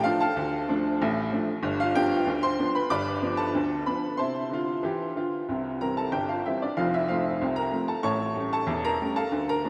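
A clear, woody upright piano, slightly detuned and up front, opens this brief, jaunty ragtime excerpt in F major at 94 BPM in a straight 2/4, playing solo across a broad range through chords moving from Dm to G7, F/C, C, F and A7, its notes touched by analog delay and soaked in a lush 2.6-second hall reverb that gives the playful tune a dreamy glow before it cuts off at 9.7 seconds.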